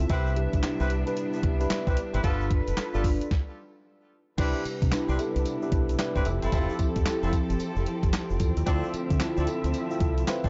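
R&B in a new jack swing style, this bouncy, slick fragment from a longer piece moves at 112 BPM in 4/4 with a 16th-note swing. Up front, a thumpy, sampler-style 12-bit drum machine with a medium-tuned snare plays kick, snare, hi-hat, handclaps, tambourine, crash cymbal and a small-room character, while a round, punchy fingered electric bass sits deep and dark beneath it. A mellow tine electric piano colored by phaser carries the accompaniment, and a studio string section holds smooth, intimate sustained chords bowed sul tasto with vibrato. From 0.1 seconds a distant, roomy jazz horn section adds tight stabs through digital delay, and a grainy, very quiet egg shaker sits low in the mix. The harmony moves from Cmaj7 and G9 through Cmaj9 and Fmaj7 to Dm7, with a stop from 3.3 to 4.4 seconds before the second section, all inside a dark, warm digital ambience.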